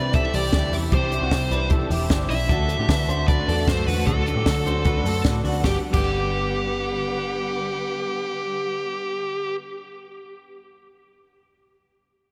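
A dark, distorted high-gain lead guitar carries the melody up front in this nostalgic, youthful excerpt of jangly indie pop at 152 BPM in G major, joined by a twangy, lo-fi electric guitar playing arpeggios until 6.8 s, a round, foam-muted picked bass, and a dry cocktail drum kit with a punchy kick and high-tuned snare that stops at 6.0 s, while further back sit a picked dreadnought acoustic guitar with finger squeak, a woody upright piano that rings on to 11.3 s, and a lush bowed string section with expressive vibrato, in a dreamy mix soaked in huge reverb as the chords move from Cadd9 through D to Gmaj7.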